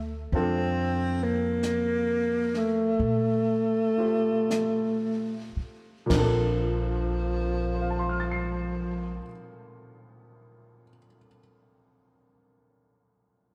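A breathy, mellow tenor saxophone carries the melody up front in this intimate, tender jazz ballad fragment in Bb major, its subtone, vibrato and scooped notes floating over a slow 36-48 BPM swing that eases back over the first 6.1 seconds. A clear concert grand piano with deep bass supplies the accompaniment from a Bbmaj9 opening, alongside a woody pizzicato upright bass and a dark, brushed drum kit with a boomy kick that drops out at 6.9 seconds. After the saxophone and bass fall away at 9.2 seconds, the piano carries on alone, all of it heard from further back in a moderate echo-chamber reverb.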